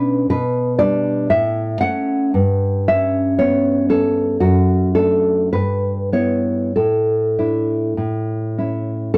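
In a rubato 2/4 that drifts between 48 and 63 BPM, this sunny, nostalgic romantic piece for solo classical guitar, cut from a longer work, places a dark, full-bodied, thumb-plucked nylon-string guitar up front in a dry, close 1970s-style studio recording with studio reverb, its finger squeaks audible as it moves through G/B, A, Gmaj9#11, D/F#, Em/G and Asus4 before arriving on A at 8.0 seconds.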